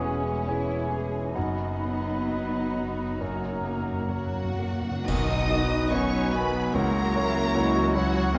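Passionate and lyrical, this slow, rubato excerpt from a romantic movement for piano and orchestra in B major sets a clear, present concert grand with long sustain on the melody alongside lush, vibrato-rich violins, while dark clarinet, hollow airy flutes and background violins carry second lines over very quiet viola and bassoon, mellow French horn chords, distant trumpet stabs and dark cello and double bass sections, with hard-mallet timpani entering at 3.2 s before bright cymbals and bass drum land an accent at 5.1 s in a moderate recital-hall reverb.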